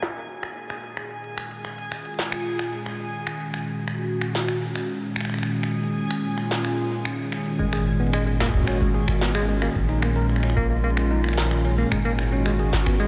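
A straight 4/4 pulse at 111 BPM comes from a tape-warm industrial drum kit of crisp hats, shaker, finger snaps and a clanging snare, filtered and delayed, while a hollow, flute-like pad holds chorused chords up front and a reversed, granular texture shimmers above; both kit and pad carry a filter sweep in this cerebral, glitchy IDM passage. At 7.6 seconds the backwards texture stops and a deep, overdriven electronic kick sits in the background alongside a rubbery, bouncy square bass and a bell-like tine electric piano playing delayed arpeggios over A#m7 and G#7(no3) chords. The short section drifts in a dreamy mix soaked in a huge ambient reverb.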